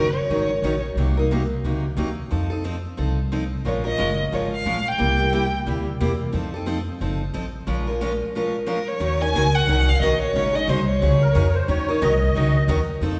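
Fiery and swinging, this cut from a longer acoustic string-swing piece is carried by a bright, boxy parlour steel-string guitar picking the accompaniment up front, finger squeaks and all, over a woody, thumpy pizzicato upright bass on dark gut strings. A bowed violin states the melody in short, smooth phrases with even vibrato, returning at 3.7 and 8.7 seconds, and a reedy, shimmering musette accordion slips in with a brief second line at 11.2 seconds. The harmony moves through minor-seventh, half-diminished and dominant changes such as Ebm7, Cm7b5 and F7, all bathed in the wet reverb of a church or concert hall.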